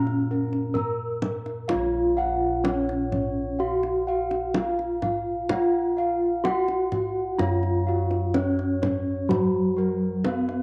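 A dark, up-front bronze metallophone carries the melody from the start, its paired tuning giving shimmering beats, over bossed gongs that play round, boxy arpeggios and a close-miked, dry bass line, with a deep, vintage-sounding kendang entering at 0.1 seconds. This hypnotic Javanese gamelan excerpt moves at a slow 63 BPM in 4/4 in Bb pelog, and at 1.7 seconds a second metallophone adds airy, ringing arpeggios struck with a wooden mallet. A wet spring reverb and studio ambience surround the bronze tones.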